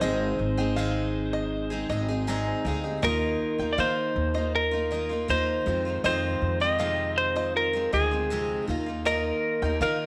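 Bathed in a wet echo-chamber reverb, this sunny, heartfelt acoustic pop excerpt puts a dark, compressed lap steel slide melody up front beside a bright, picked steel-string acoustic guitar, while a growly pizzicato upright bass anchors the Ab, Ebsus2 and Fm7 changes, a twangy fingerpicked banjo ripples arpeggios in the background, and a very quiet, worn, slightly out-of-tune reed electric piano slips in a brief fill at 1.9 seconds.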